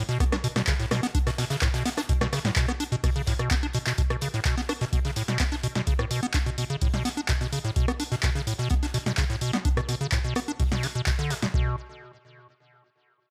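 A squelchy, hollow square-wave acid bass riff sits up front from the very start, its resonant filter pluck giving each note a fast attack that quickly decays, roughened by tube saturation, gritty vintage 12-bit sampler character and tape echo. This is driving, raw acid house in a straight 4/4, cut from a longer piece and opening on a drop that runs to 4.0 seconds, where a drum fill leads into the main groove. A dry, deep analog electronic kick anchors the beat up front, joined by a punchy analog drum machine whose tape-warm snare, handclaps and hi-hat carry a short room, alongside a rim click. Further back, an airy, polished acoustic kit adds hi-hat and a medium-tuned snare in a small room, filtered to keep its low end thin. The drums drop out around 11.5 seconds while the bass riff carries on briefly into a short closing passage.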